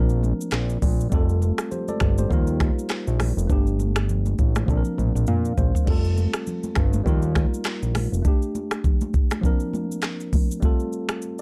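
A swung sixteenth-note afrobeats groove at 101 BPM in 4/4 drives this sultry, smooth excerpt, where an up-front electronic afro-pop kit with knocking kick, smooth hats, snaps, claps, rim clicks, shaker and toms carries a drum fill from 4.7 to 5.9 seconds, a thick, saturated sawtooth bass holds the low end until 8.2 seconds, a worn, slightly out-of-tune electric piano bathed in plate reverb comps through Bbadd9, Fadd9, Ebadd9 and Gsus2 and adds its own brief fill, and ringing, high-tuned congas sit in the background of a dark, dry mix.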